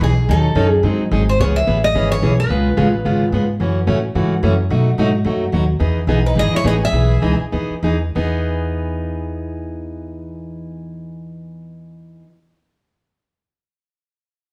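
Playful and swinging, this excerpt of acoustic string swing in E major moves at a brisk 184-218 BPM with a lilting swung feel, easing into a slowdown between 5.8 and 8.2 seconds as the changes resolve to Emaj7. A bright, full-bodied jumbo guitar picks the up-front melody in two short phrases, while a parlour guitar picks a warm accompaniment throughout and a woody, thumpy gut-string upright bass anchors the low end. At 6.3 seconds a bowed violin slips in behind them with vibrato, soft attacks and expressive portamento, all set in a lush large-room reverb that captures the band playing live together.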